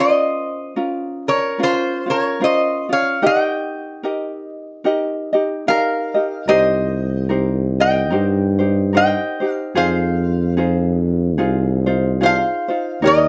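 A metallic, nasal lap resonator guitar played with fingerpicks and slide carries the melody with a slapback echo over a light, fingerpicked ukulele in this relaxed, languid Hawaiian excerpt at 73 BPM with a gentle swing, moving from Bbmadd9 through Eb, Cm7 and Fm7 in a close, dry, detailed sound, and a mellow, jazz-style tuba with vibrato and scooped notes joins on the bass at 6.5 seconds.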